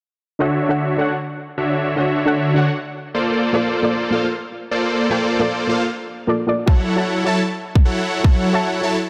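Euphoric and playful, this future bass passage at 153 BPM moves in a half-time feel in D major, with huge, detuned supersaw chords carrying the riff through Dmaj7, Bbmaj7 and F#m7 under a filter sweep, sidechain pumping and dub echo. Alongside them a soft, round, dark pluck with chorus and a sub octave plays the accompaniment, also pumping and echoing, while a lush hall reverb gives the piece depth. A hard-clipped, tape-tinged electronic kick sits up front from 6.7 s to 8.3 s before this section of a longer piece cuts off.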